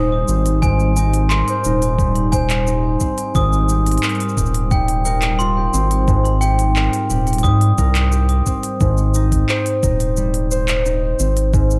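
A fingerpicked concert harp rings up front with arpeggios, its acoustic tone roughened by vintage 12-bit sampler grit and digital delay, in this delicate, warm folktronica excerpt in Ab major at 88 BPM. A round, dark analog bass sits beneath it alongside a muffled, thumpy electronic kick, while an organic electronic kit adds crisp hats, handclaps and shaker with overdrive. A bell-like glockenspiel struck with hard plastic mallets plays a delayed second line until 7.8 seconds, and a smooth, detuned analog pad holds mellow chords with chorus in the background until 8.8 seconds, where an Abmaj7 chord arrives.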